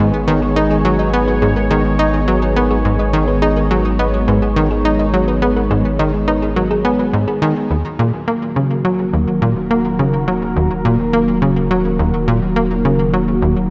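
In a straight 4/4, this expansive, mysterious stretch of sequencer-driven ambient space music is propelled by a tight, punchy sequencer bass riff up front, its nasal sawtooth-and-square tone given a filter pluck, cassette-tape grit and tape echo, while a round, deep analog bass of triangle and sine holds the low end beneath it. A detuned, sweeping resonant pad sustains chords with a slow attack, a filter swell and chorus, and a gentle, tine-like thumb-piano synth pluck plays mellow FM arpeggios with chorus and tape echo in the background until 7.6 s. The dark production sits in a lush hall reverb, and the harmony moves from a minor chord to another minor chord at 7.7 s, cut from a longer piece.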